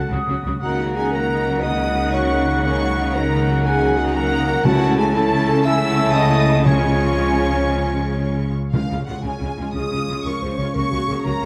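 Cinematic orchestral music in a heroic, triumphant mood, moving at 119 BPM in a straight 12/8 and centred on Db major, cut from a longer piece. A close, smooth studio violin section carries the melody, joined by a lush symphonic violin section in the background, a dark clarinet, an airy flute ensemble and a distant, very quiet oboe that drops out at 8.6 s. Mellow French horns and a tight, soft-edged trombone section hold sustained chords, while a roomy trumpet adds stabs from the back of the hall. From 0.1 s, distant violas fill in the accompaniment and focused cellos join a double bass section, heard up front, on a deep pedal bass. Very quiet, dry timpani enter at 4.6 s, as the harmony turns through A/C# toward Db, and stop at 9.2 s. A moderate scoring-stage reverb gives the dark production a full, glowing sense of space.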